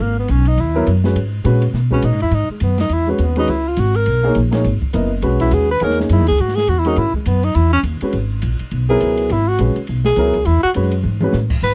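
A dry, close recording in a 1970s studio style carries this cool, hypnotic modal jazz excerpt, swinging at 206 BPM in 4/4 over a single C#m11 chord in C# dorian. A breathy tenor saxophone solos up front throughout, with vibrato, soft attacks and scooped notes, over a woody, thumpy pizzicato upright bass, while a baby grand piano with long sustain enters at 0.7 seconds to accompany. An open acoustic drum kit with dark cymbals, a medium-tuned snare and a boomy kick sits lower in the mix and plays a fill at 11.0 seconds.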